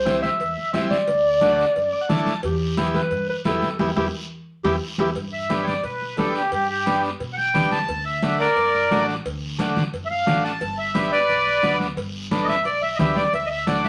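A dark, up-front clarinet with vibrato and scooped notes carries a jazz-style solo over the first 5.1 seconds of this joyful, festive cumbia excerpt, joined by a buzzy, overdriven vintage combo organ that adds a short fill near 1.8 seconds. At 5.3 seconds a reedy, full accordion with slow beating takes over the melody, close and dry, while a woody, thumpy pizzicato upright bass sits underneath. Thick-skinned congas played with soft hands, a raspy guiro, and ringing cowbell and timbales in the background keep the festive groove going, and a drum fill with a band accent leads into the accordion's entrance.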